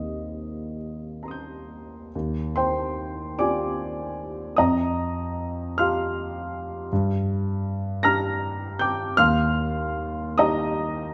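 A lone high Eb6 opens this brief cut from a longer impressionist solo piano piece in Eb major, its hazy, luminous mood unfolding in a slow, rubato 6/8 at roughly 42-54 dotted-quarter beats per minute. The smooth, vintage-toned grand piano sits up front and spans Eb2 to Bb6, moving through Ebmaj9 at 2.1 seconds, then F9sus4, Gm7 and finally Ebadd9 at 9.2 seconds. Close, detailed microphones capture the instrument within a moderate recital hall reverb.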